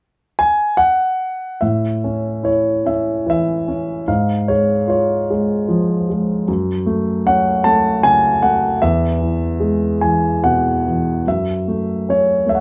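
A warm grand piano enters at 0.4 s and sits up front in a small, moderately reverberant room. It plays a peaceful, lyrical classical solo in A major and 3/4 at 75 BPM, with uneven, rubato beats. Tuned to A4 = 443 Hz and spanning E2 to A5, it moves through A, C#/G#, F#m and E before settling again on F#m, and this cut from a longer piece stops at 12.6 s.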